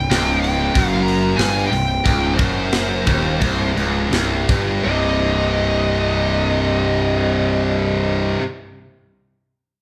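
In a straight 4/4 pulse, this heavy metal excerpt feels epic and relentless, and it slows down across its first 4.9 seconds. Two bright, distorted rhythm guitars sit up front playing low riffs, one heavy and high-gain, the other tight and picked. Beneath them a growly, fuzz-laden picked electric bass adds an overdriven low end. A dark, high-gain lead guitar carries the melody above the riffs. The tight acoustic drum kit, with its gritty, saturated snare, kick and hi-hat and a rolled-off top, plays from 0.1 to 4.7 seconds before dropping out. The band sounds as if it is playing live in one large studio room, with a moderate reverb around it.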